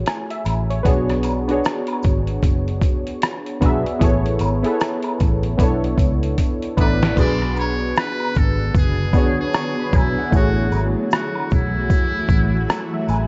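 Lightly reverberant and rolled off in the highs, this reflective, melancholic lo-fi hip hop excerpt in B dorian moves at 76 BPM with a swung 16th feel. Detuned, chorused analog keys with a filter sweep and cassette tape haze sit up front over a dark, foam-muted electric bass, while a gritty, pitched-down sampler drum kit thumps along with maracas and woodblock distant in the background, rolling into a fill before the hi-hats drop out at 7.2 seconds. A buzzy, metal-muted trumpet in jazz style enters at 6.8 seconds with vibrato through analog delay, and a cloudy granular pad with a slow attack rises beneath it from 8.2 seconds.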